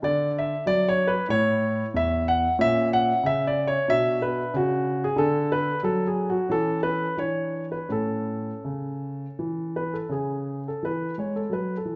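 A dark, mellow concert grand piano with deep bass sits up front and plays alone in this flowing, radiant baroque-style classical suite movement in A major, moving at 80-96 BPM in 4/4 with a rubato feel through chords such as D, Bm and A/E in a moderate recital-hall reverb, in a short passage taken from a longer piece.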